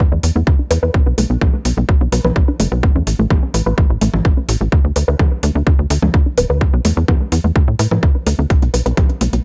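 Dark and cinematic, this melodic techno excerpt runs in a straight 4/4 with a punchy, tape-warm kick up front, overdriven metallic hats and congas set in a large room, and a tight, driving sequencer bass built from sawtooth and square waves with ring modulation and a fast-attack filter pluck. Over them, a lush, detuned unison pluck plays arpeggios through phaser and analog delay, pumping with the sidechain as a filter sweep runs across the whole 9.4 seconds. The chords move from E5 through Bm, A and D5 and back, all captured with a dry, gritty hardware sound coloured by transformer saturation and cassette tape.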